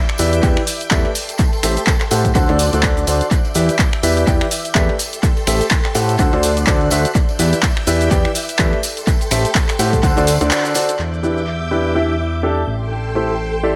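Shimmering, vintage string-machine violins open this energetic, soulful piano house cut with slow-attack sustained chords thickened by ensemble chorus and sidechain pumping. A bright, brilliant grand piano riff carries 12-bit sampler grit and tape echo, over a fat, detuned sawtooth bass and a punchy, up-front electronic kick. A tape-warm analog drum machine adds finger snaps, handclaps, hi-hat and shaker, while a very quiet tambourine sits in the background of the echo-heavy mix. After a band accent at 10.5 seconds, the drum machine and tambourine drop out at 11.0 seconds, and the piano rides a filter sweep from there to the cut.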